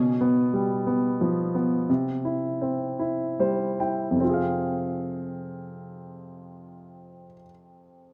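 A baby grand piano opens this short pop fragment, its tone warm and polished and placed up front, carrying a melancholic, dramatic mood in a straight 6/8 metre. Serving as accompaniment, it spans from low in the bass to high in the treble. Through the opening passage the tempo slows, and a piano fill from 3.0 to 4.2 seconds leads into a new section that settles on a minor chord and plays on until the close at 8.1 seconds. A light studio reverb gives the instrument a touch of space, though the overall mix has the rough quality of a home demo. Cut from a longer piece, it feels like a brief, emotionally charged moment of transition.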